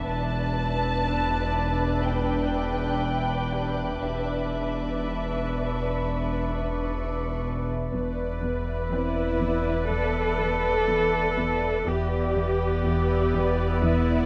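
Tense and eerie, this excerpt from a suspense film score moves at a slow 61 BPM in E minor, resting on a single Em7 chord. Muted violins carry a veiled, distant melody over a closer, lush second violin line, while muted cellos and double basses anchor the low end, reinforced by a deep, full sub bass drone on E1 with lush chorus. A bubbling, resonant synth texture with random filter steps holds sustained chords, and a bright grand piano with a worn, short-sustained tone adds a very quiet glint. High muted violins shimmer faintly until 7.4 seconds, and at 7.9 seconds muted violas enter in the background with accompaniment as a cello riff on a low E joins. The dark, con sordino strings sit in a vast, echoing cathedral space that lends the whole cue a tense, eerie atmosphere.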